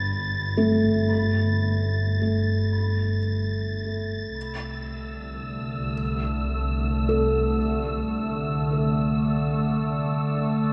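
Drenched in a vast cathedral reverb with a dull top end, this weightless, warm ambient fragment in free time sets a thick-felted upright piano's muted, intimate arpeggios, with audible action noise and a diffuse delay, over a woody, bowed double bass section with lush vibrato, and a breathy, wind-like tuned noise layer high above, all three fading out as the harmony moves from G to Cadd9 at 4.4 seconds, while a calm, detuned organ-like drone with chorus enters up front at 5.4 seconds.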